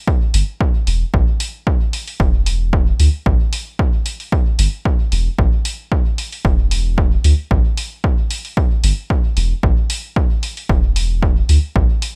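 Dub techno at 113 BPM in 4/4 with a slight swing on the sixteenths, carrying a nocturnal, deep mood through this short section cut from a longer piece. A punchy analog electronic kick sits up front beside a soft, round sub bass of triangle and square waves that ranges from E1 to D2 with a fast attack and sustained notes, pumping under sidechain compression, while an analog electronic hi-hat sits lower in the mix, both drums re-recorded in a large room. The production is bright and 1980s-style digital with little reverb.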